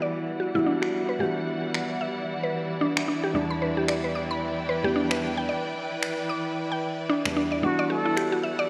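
Organic downtempo at 112 BPM in E minor with a swung 16th-note feel, this hypnotic, mystical passage layers a soft, felt-muted upright piano with audible action noise, dark bowed studio strings holding sustained chords, and a round, woody FM synth pluck playing arpeggios under a filter sweep, while overdriven electronic finger snaps enter at 0.8 s and a breathy plunger-muted trumpet adds a brief wah-wah jazz melody at 7.6 s, all set in a lush hall reverb with bright 1980s-style digital sheen.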